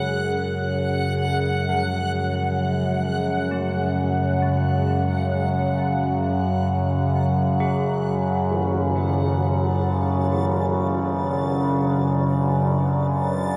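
Dark and unsettling, this slow dark ambient drone excerpt moves at 66 BPM in 4/4 in F# harmonic minor, cut from a longer piece. Up front, an overtone-sweeping drone anchors the low register with resonant, moving overtones, while a deep, moody pad holds sustained chords in the background and fades out across the whole passage. Above them, a reversed, swelling texture adds a dreamy, bright glimmer with granular detail and shimmer reverb, also fading out, and a very quiet bronze metallophone plays ringing, close-miked arpeggios until 13.1 s. A dark, dry tam-tam sounds in the background from 8.5 s to 10.5 s, fading in as the harmony shifts from F#madd9 to D6/F#. The whole is bathed in a huge, wet ambient reverb with a long 8.6-second decay.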